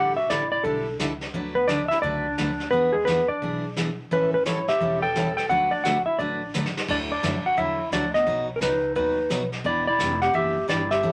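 A moderate club reverb gives this swinging, playful western swing excerpt an intimate room sound, with a clean, dark lap steel guitar up front carrying the slide melody while a distant, growling clarinet with raspy subtone and scooped notes plays a second line. A bright, full-bodied picked acoustic guitar supplies the accompaniment over thumpy, woody pizzicato upright bass, and a vintage brush drum kit with a rolled-off top and a punchy kick comes in at 0.3 seconds. A drum fill at 6.5 seconds leads into a new section at 6.9 seconds, where the chords move through Dadd9, B and Em7.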